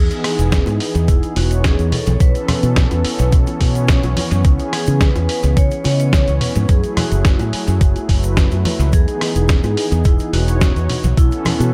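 This excerpt opens in a digital ambience with an echo-heavy mix, setting a groovy, feel-good nu-disco track in E major at 107 BPM in a straight 4/4. A thumpy, tape-warm electronic kick sits up front from 0.5 seconds, alongside a gritty, compressed sampler-style soul kit of hi-hat, rim click and medium-tuned snare carrying dub echo, which enters at 0.1 seconds together with tube shaker, bongos and congas murmuring acoustically in the background. The fingered electric bass is bright and direct, shaped by its envelope filter and sidechain pumping, and sits firmly up front. A smooth, warbling analog pad of detuned sawtooth and triangle tones swells in with a slow attack, sustaining chords through chorus, sidechain pumping and dub echo. Over it, a metallic, ringing vibraphone played with medium hard mallets and a medium motor vibrato carries the melody, its notes trailing off in dub echo. The harmony moves from Emaj7 through B9sus4, C#m7 and F#m9 before returning to Emaj7 and B9sus4.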